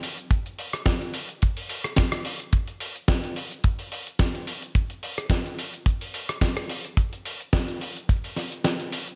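Sleek and groovy, this short nu-disco cut moves at 108 BPM in 4/4 with a light swing on the sixteenths. A gritty, tape-warm sampler-style kit of hi-hat, rim click, shaker and medium-tuned snare sits up front with gated reverb, while a tight, dry, airy kick enters at 0.3 seconds and drops out at 8.6 seconds. The bright 1980s-style digital production places it all in a small room with light reverb.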